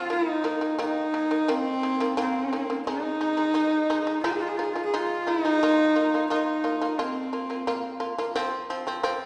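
A straight 4/4 pulse at 87 BPM carries this solemn, vast stretch of Mongolian folk music, cut from a longer piece, where a husky, biting horsehead fiddle bows the melody up front with light vibrato and portamento over buzzing, percussive plectrum-plucked shamisen arpeggios through chords of Eb5, Ab5, Bb5 and F5, the fiddle stopping at 8.0 s so the shamisen plays alone until 9.3 s, all bathed in a wet recital hall reverb.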